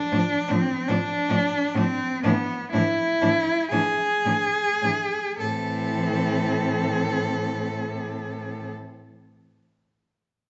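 Heard through a wet recital hall reverb with a softened, dulled top end, this short cut from a longer classical piece sets four cellos in A minor, moving slowly in a rubato 6/8 at 33-54 BPM and slowing down over its first 5.4 seconds. Up front, a warm solo cello sings the melody with vibrato, portamento and a soft attack. Behind it, a smooth, even second cello holds a quieter line. Meanwhile, a dark, close cello adds expressive accompaniment with portamento, and a rich, intense cello carries the low bass as the harmony moves from Dm/A to E/A in a melancholic, elegiac mood.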